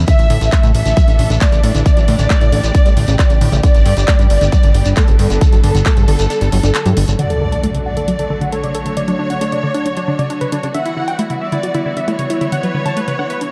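A punchy, funky analog bass opens this uplifting trance excerpt, pumping against an overdriven, up-front electronic kick, with handclaps and hi-hat from a layered dance kit, a grainy shekere, a mellow chorused analog pluck playing filter-swept arpeggios, lush, distant symphonic strings holding chords, and an expressive, close violin section carrying a second line with dub echo. The kick drops out at 5.9 seconds, and after a brief break the bass and shekere stop at 7.2 seconds, where an electronic impact lands and a bright, detuned supersaw stab enters with the melody through a filter sweep. The production is dark and dry, with a euphoric lift.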